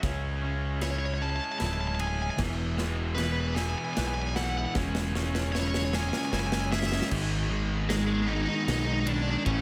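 A twangy, chorused guitar picks arpeggios over a scooped distorted riff, a growling up-front bass, a punchy rock kit with bright cymbals and a very quiet, rich string section, opening this cinematic, euphoric post-rock excerpt at 76 BPM in 3/4 as a drum fill drives a build-up through C#m, E and C#m/E. A crunchy overdriven lead melody with slapback echo enters at 0.8 s, and a sludgy background riff guitar joins at 2.4 s. The twangy guitar drops out at 7.1 s as the music shifts to G#m in a light, small-room space.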